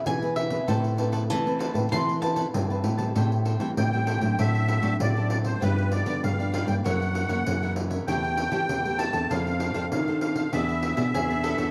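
A reedy, shimmering musette accordion carries the melody from 3.8 seconds in this lively, bittersweet samba and choro clip, after a round, double-strung mandolin opens with a short solo; a thumb-plucked classical nylon-string guitar plays accompaniment up front, a second full-bodied nylon-string guitar holds the bass in the background, a crisp, bright cavaquinho picks along further back, and a jingly pandeiro played with soft hands sounds distant, all set in a dark production with light reverb.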